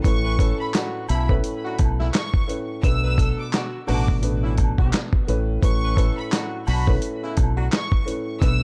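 A dark, small-room production frames this moody, tough boom-bap hip-hop fragment at 86 BPM, swinging on a single Aadd9 chord. Up front, a gritty, compressed sampler-style kit thumps out kick, snare, hi-hat and handclaps over a round, punchy fingered electric bass, while a mellow, woody upright piano carries the accompaniment and an egg shaker and woodblock sit distant in the background. High above, a lush bowed violin section sings the melody with vibrato and digital delay, and a smooth-topped horn section adds delayed stabs from 0.2 to 7.7 seconds.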